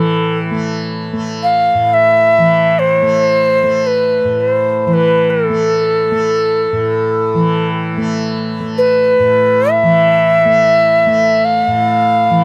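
A breathy, bright cedar flute carries a haunting, tongued melody with a straight tone up front, while a mellow, softly plucked tanpura shimmers and buzzes beneath as a steady drone in this meditative world-music excerpt, set in a moderate booth ambience.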